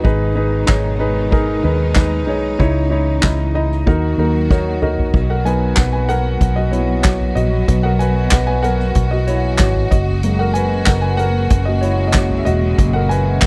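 A straight 4/4 groove from a soft-mallet drum kit, with dark cymbals, a boomy kick and handclaps, drives this dramatic piano-driven pop excerpt alongside a round, foam-muted fingered electric bass, while lush bowed strings hold sustained chords beneath an intimate concert grand with audible action noise; a drum fill at 4.5 seconds ushers in a piano solo from 5.1 seconds to the end, in a dry, close 1970s-style studio sound.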